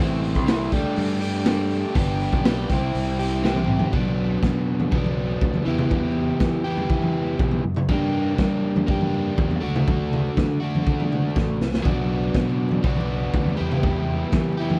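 A double-tracked, overdriven electric guitar riff and a growling, overdriven fingered bass open this carefree, jangly indie rock excerpt at 121 BPM, with a soft, flute-like tonewheel organ holding very quiet chords through a slow rotary speaker until 3.9 seconds, a punchy, gritty garage drum kit with a pumping small-room sound driving things from 0.2 seconds and firing fills before the organ returns at 11.8 seconds, all under vinyl crackle as the chords move from Am7 and Gmaj7 into Bm, Em, Gm and D.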